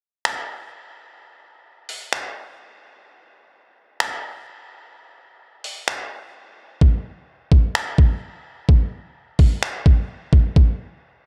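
The recording has a dark, warm production with little reverb. This is a spacious, melancholic hip hop excerpt at 128 BPM in 4/4 with a half-time feel. A sampler-style boom bap drum kit, placed up front, enters at 0.3 seconds and carries the piece alone with finger snaps, hi-hat and a thumpy kick drum. The kit sounds gritty and compressed at its natural pitch, and it was re-recorded in a large room. The kick drops out between 5.9 and 6.8 seconds before the groove runs on until the drums stop at 10.7 seconds.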